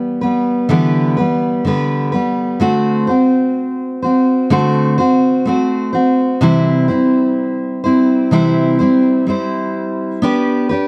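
A fingerpicked steel-string acoustic guitar carries this short pop excerpt on its own, its full-bodied dreadnought tone sitting up front and spanning C3 to C5. The mood is emotional and longing, set at a slow 63 BPM in a straight 4/4, with the instrument tuned to A4 = 435 Hz. The harmony moves from Em7 to D7 at 2.6 seconds, settles on C at 6.4 seconds, and reaches G/B at 10.2 seconds before the clip is cut off from the longer piece. Light reverb surrounds the guitar, and the production leans dark and warm. The whole passage is a single section lasting just under 11 seconds.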